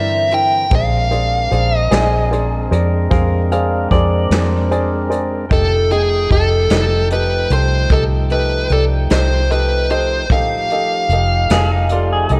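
A dark, smooth lead guitar sits up front with overdrive and slapback echo, carrying the melody through this gritty, rollicking slow blues in a straight 12/8. Beneath it, a round, foam-muted electric bass with a vintage tone anchors the low end, while brushes on a drum kit with a punchy kick and a rolled-off top come in at 0.3 seconds. A woody upright piano with short sustain adds polished accompaniment touched by slapback echo, and a clear tonewheel organ with its rotary speaker stopped holds sustained chords. At 1.9 seconds a clean, fingered electric guitar joins with a second line, bathed in spring reverb and slapback echo. The harmony moves from C9 to Bb9 and settles on F9 at 5.5 seconds, all within a small, lightly reverberant room, in a short cut from a longer piece.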